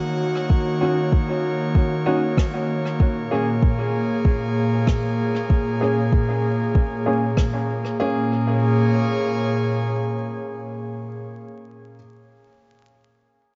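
A lightly swung groove in four carries this meditative, hazy ambient dub fragment, with a soft electronic kick up front from 0.5 s to 7.5 s and a faint rim click, brushed and natural with dub echo, sitting in the background from 2.4 s. An airy, breathy pad with chorus holds sustained chords moving from Ebm7 to Bbm7, while a woody, boxy upright piano drops low-pass filtered stabs trailed by dub echo and continues until 12.0 s. Moderate recital hall reverb and vinyl crackle lend a dusky, softened top to this section cut from a longer piece.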